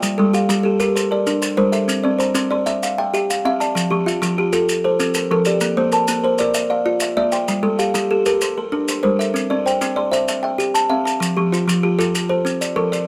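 Rippling and hypnotic, this southern African traditional piece in 12/8, cut from a longer performance, sets a bright, woody kalimba with a solid-board thumbnail pluck up front beside a buzzing, hollow-box kalimba with a vintage, band-limited tone, both playing short arpeggios through an mbira-style interlocking cycle over grainy, mellow maracas in a moderate studio reverb.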